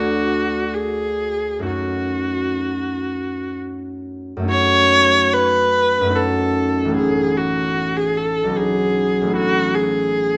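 Hazy and wistful, this fragment of an impressionist classical duo drifts in a rubato 3/4 at 62-79 BPM in F# dorian, with a rich, bowed viola singing the melody up front with vibrato, soft attacks and expressive portamento. A ringing concert harp, fingerpicked and close, accompanies it through harmonies such as F#m6, A69 and Amaj9. A moderate large-studio reverb surrounds both instruments.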